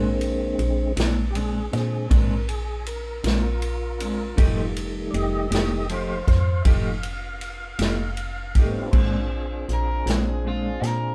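Slow blues in 12/8 at 53 BPM in Bb mixolydian, rollicking yet laid-back, where a mellow, lightly overdriven tonewheel organ takes the solo through a slow rotary speaker and chorus vibrato over Bb9 and F9 chords, backed by a dark, clean fingered electric guitar with tremolo, a woody, round FM bass and an up-front big-band drum kit with crash, ride, hi-hat, snare and punchy kick, until an overdriven semi-hollow guitar slips in with a brief melody at 9.7 seconds, all heard as a band playing live in one room with light reverb in this short cut from a longer piece.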